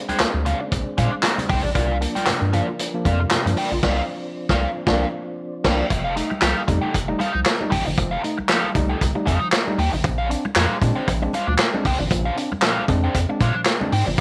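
Set in a small room with light reverb, this strutting funk fragment opens on a clear, lightly overdriven tonewheel organ holding background chords through a fast rotary speaker, with key click and chorus vibrato, until it drops out at 5.9 seconds. Beneath it, a gritty vintage drum kit with dark cymbals, handclaps and a tight kick sits up front beside a round, deep analog bass, while a bright, picked guitar with wah and tube saturation comps and very quiet congas ring with hard hands. A barky tine electric piano through a combo amp enters with stabs at 1.8 seconds, and the band hits an accent from 3.8 to 5.9 seconds before moving into a new section.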